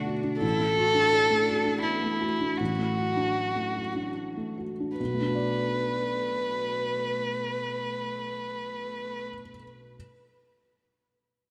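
A rough home demo mix, bathed in a lush hall reverb, carries this melancholic, longing fragment of neoclassical piano and strings in B minor, moving in a rubato 3/4 at 72-87 BPM, tuned to A4 = 438 Hz, and slowing down through its first 5.0 seconds. Up front, a felt-muted upright piano gives a soft, boxy, intimate accompaniment with audible action noise, playing until 10.0 seconds. A single bowed violin sings the expressive melody with vibrato and portamento, while a smooth, rich solo cello traces a second line in the background, both stopping at 9.3 seconds, as the harmony moves from Dadd9/A to Bm7 at the start of the second section at 5.0 seconds.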